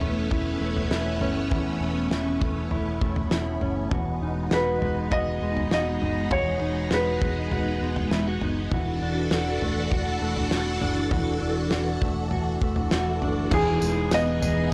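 A felt-muted upright piano sits up front with a soft, intimate melody, drifting in at 4.5 seconds and returning at 13.5 seconds through tape echo, in this floating, ethereal dream pop piece cut from a longer work. Beneath it, a swirling, bright string machine holds sustained chords through ensemble chorus and phaser, while a dark, clean electric guitar spins arpeggios with subtle chorus and tape echo. A round, punchy muted bass with tube saturation and a loose indie kit with a fat snare, tight kick, dark cymbals and tambourine anchor the straight 4/4 groove, all captured in a dry, gritty recording with light reverb and transformer saturation.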